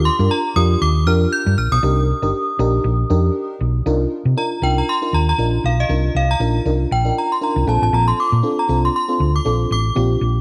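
Early-eighties boogie funk at 118 BPM in C dorian, with a late-night, slick mood and a lightly swung sixteenth-note feel, cut from a longer piece. A round, dark hollow-body short-scale electric bass sits up front beneath a lush, warbling FM electric piano layered with a soft, dreamy pad and chorus, while an inharmonic, ringing synth chime carries the melody through ensemble chorus, phaser and tremolo, and a synth bell solo arrives at 3.9 s. The chords drift from Ebmaj7 to Cm9, then Cm11 and Bbmaj7, set in a moderate echo-chamber reverb.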